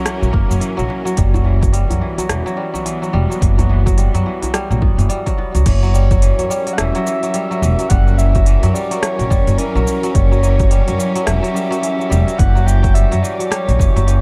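A dark, warm small-room production frames this meditative organic downtempo piece, cut from a longer work, where a lush bowed string section holds sustained chords that pump under sidechain while a bright, ringing kora plays fingerpicked arpeggios through digital delay. A woody, growly pizzicato upright bass sits up front over a punchy, overdriven electronic kick and a tape-warm electronic kit of smooth hats, rim click, shaker and crash, with a soft-handed djembe in the background until 5.5 seconds. At 5.7 seconds a breathy, flute-like synth lead takes the melody with chorus and tape echo, and from 6.4 seconds a very quiet glassy texture of drifting overtones settles in behind it.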